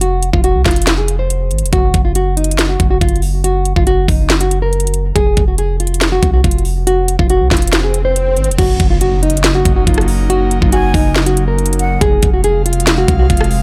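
A half-time trap beat at 140 BPM drives this hard-hitting, eerie hip hop excerpt: an overdriven, up-front electronic kit with knocking kick, sharp snare and metallic hats sits over a deep, mellow sine 808 bass with long, decaying notes. A dark, fingerpicked nylon-string guitar carries the classical-tinged melody up front, finger squeaks audible through its low-pass filter and tape echo, while a very quiet electronic swell and impact arrive at 7.4 seconds to mark the shift into the second section. From 8.9 seconds an airy, detuned pad with a noise layer, slow attack and chorus holds sustained chords, and at 10.7 seconds a breathy jazz flute adds a brief, expressive straight-tone second line trailed by tape echo, all within a digital ambience.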